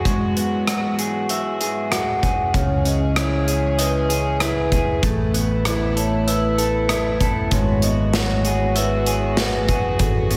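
Cinematic and soaring, this post-rock passage is cut from a longer piece and moves in a straight 4/4 feel through a chord cycle of Eadd9/G#, C#madd9, Asus2 and back to Eadd9/G#. A rich symphonic string section holds distant, floating sustained chords from the start, bowed with a soft attack, while an electric guitar through a small old amp plays picked arpeggios up front, its slightly broken-up, lo-fi tone compressed and dressed in spring reverb and slapback echo. A big rock drum kit enters almost at once with a punchy kick, a medium-tuned snare, hi-hat and rim clicks, sounding acoustic and close. At 2.5 seconds a fingered electric bass joins with a direct, warm low end, alongside a vibraphone played with soft mallets and the motor off, its mellow, ringing arpeggios carrying a boxy small-room character and their own slapback echo. The whole mix sits in a wet concert hall reverb that lends it a big arena sound.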